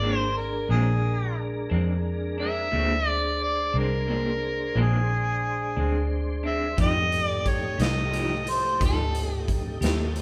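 A mellow harmonica carries the melody up front in this gritty, rollicking slow blues excerpt, its light vibrato and scooped notes lending a vintage jazz flavour over a 12/8 pulse at 59 BPM in Bb mixolydian, moving from Bb9 to F9. A twangy, slightly broken-up electric guitar through a small old amp adds tremolo-laced accompaniment, while a tonewheel organ holds smooth sustained chords with key click, chorus vibrato and a slow rotary speaker, and a dark, foam-muted vintage bass sits round and punchy underneath. At 6.8 seconds a raw garage drum kit enters with saturated, pumping hi-hat, kick and snare, the whole band heard live in one room with moderate large studio reverb.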